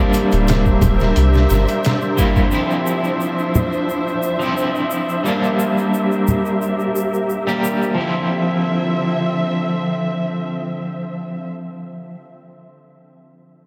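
A twangy, slightly broken-up electric guitar with tremolo and tape echo accompanies this hypnotic, brooding trip hop fragment alongside lush, woody sul tasto strings under a filter sweep, an airy, wind-like noise layer that stops at 8.0 seconds, a brief spell of gritty, pitched-down sampler drums with a thumpy kick, ringing congas and egg shaker played with soft hands, and a deep, round dub sub bass heard only from 0.3 to 1.7 seconds, the dreamy mix soaked in cathedral reverb.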